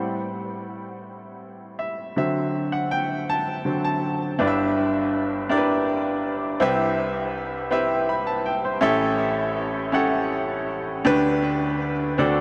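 Gospel in G major with a jubilant, hopeful mood, moving at a slow 54 BPM in a straight 6/8, cut from a longer piece. A clear baby grand piano plays alone and up front from 0.0 to 12.4 seconds, spanning G1 to B5 with delay, through a progression of Am7, D7, G6, Cmaj7 and A7 before settling on G/D. A huge ambient reverb with an 8.5-second tail soaks the mix in a dreamy haze, with a new passage beginning at 4.4 seconds.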